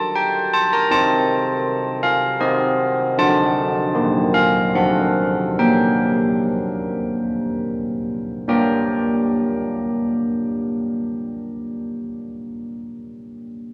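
A cathedral's long, wet reverberation, with a decay of about 6.2 seconds, surrounds this recording, layered over a touch of small-room ambience. It is a solemn, wintry classical tune for church bells in G minor and 3/4 time, cut from a longer piece, moving at 59 to 80 BPM with a straight feel. A carillon plays alone and up front throughout, ranging from D3 to Bb5, its bronze tone carrying a distinct minor-third overtone and the clank of an iron clapper. The bells have a vintage, band-limited character that lends the ringing an aged quality. The harmony moves from Eb through Am7b5/C and D, returns to Eb, and settles through D7 onto Gm as the tempo slows between 2.0 and 8.5 seconds, before a brief contrasting passage begins at 8.5 seconds.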